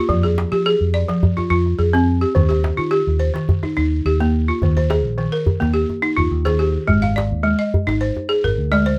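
A woody, buzzing balafon leads this short cut from a longer West African traditional piece, playing up-front arpeggios with hard rubber mallets from Eb3 to F5. The mood is reflective and flowing, with a straight 4/4 feel at 106 BPM. A moment after it enters, a fingered electric bass adds a dark, round, amped low line that sits up front in the mix, while a djembe played with soft hands gives a tight, cracking pulse recorded close and dry. The harmony moves from F minor to E-flat and then to A-flat. The music shifts into its second section at 4.6 seconds, and light reverb gives the overall sound a little space.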